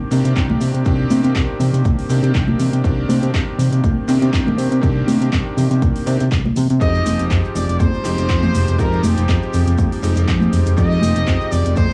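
A lo-fi, cassette-tinted home recording with light small-room reverb carries this groovy, cosmic nu-disco excerpt at 121 BPM in C minor, swinging gently on the sixteenths as the harmony moves from Cm9 to Fm9. A fat, detuned analog bass with ring modulation and a filter sweep sits up front, while a punchy overdriven electronic kick and a pop kit of metallic hi-hats, cabasa and handclaps drive the groove, with soft-handed maracas and congas tucked in the background. A bright, clangy electric grand piano with chorused unisons and tape echo supplies the chords from the start, and a vibrato-laden trumpet section joins with the melody at 6.8 seconds.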